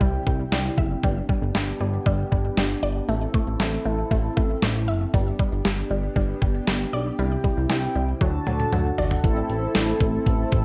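A straight 4/4 pulse at 117 BPM drives this wistful, nostalgic synth-pop fragment in G major, carried by a thumpy, detuned 8-bit drum machine up front with kick, medium-tuned snare, hi-hat and toms, and a drum fill at 8.2 seconds. A glossy chorused synth bass anchors the low end while a shimmering, dark pulse-width pad holds the chords, and a bright, punchy unison pluck plays arpeggios through phaser and digital delay until 9.2 seconds, when a round, brassy synth brass with chorus and vibrato enters as accompaniment. The whole mix sits in a moderate digital room reverb and carries the worn, warbling pitch drift of old cassette tape.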